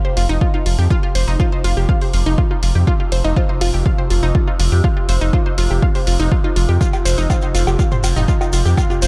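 A straight 4/4 pulse at 122 BPM drives this cinematic, hypnotic melodic techno excerpt, where an overdriven, up-front electronic kick pairs with a tape-warm analog drum machine of hi-hat, toms and woodblock with sidechain pumping and dub echo, a round, deep bass with tube saturation pumps from F1 to F2, a bright, detuned unison pluck spins arpeggios between Eb4 and F5 through analog delay, a resonant drone with moving overtones sits in the background under chorus and phaser, and a grainy shekere joins at 6.8 seconds, all within a light-reverb, echo-heavy mix.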